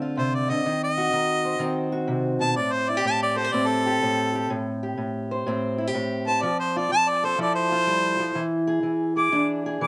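A swung 4/4 at 125 BPM carries this smoky, soulful acoustic country blues duo in A minor, where a dark, boxy fingerpicked parlour-style steel-string guitar accompanies from the start through chords like Dm7, Am7, Fmaj7 and E7 while a soft-attack harmonica, entering at 0.2 seconds, plays an up-front jazz-style solo with light vibrato and scooped notes, both parts dry and open-air with a touch of slapback echo in this brief cut from a longer piece.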